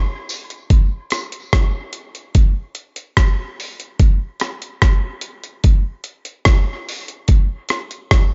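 This hypnotic, heavy reggae excerpt opens at 0.3 seconds with a gritty, compressed sampler-style breakbeat kit up front, its thumpy kick, hi-hat and rim click setting a straight 73 BPM groove in 4/4. A small-room acoustic tambourine with a shaker-like, handclap-like character sits in the background, trailing dub echo until it drops out at 1.3 seconds. The drums then carry on alone to the end, in a dry mix with a dull top.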